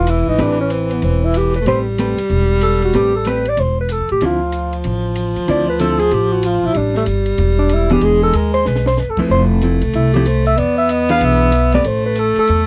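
A breathy alto saxophone carries the melody from the first moment, with a mellow baritone saxophone beneath it on a second line and a woody, growly pizzicato upright bass up front. This cool, moody jazz excerpt swings in 4/4 at 188 BPM in A minor, moving from Am9 through Dm9, E7 and Fmaj7 before settling back on Am. The alto has a dark subtone, punchy attack and scooped notes, and it sits at a slight, roomy distance. The baritone brings a soft-attacked, whispered intimacy and light vibrato. From 0.4 seconds a clean, compressed hollow-body electric guitar adds picked accompaniment, while a compact cocktail drum kit with a high-tuned snare, punchy kick and dark cymbals stays in the background, breaking into a short fill at 8.7 seconds. The dry, close sound recalls a 1970s studio session.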